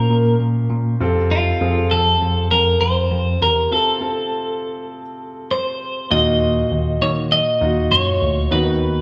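A straight 4/4 pulse at 100 BPM drives this earnest pop excerpt, with a break from 3.7 to 6.1 seconds before the harmony moves from Bbm and F to Ebmadd9 at 6.1 seconds. Up front, a twangy, compressed twelve-string electric guitar carries the picked melody, while a bell-like tine electric piano holds down the bass line with a bright, direct tone. A polished concert grand piano fills in the accompaniment with deep bass, long sustain and audible action noise, and the band sounds as if playing live together in a stone room with a wet reverb.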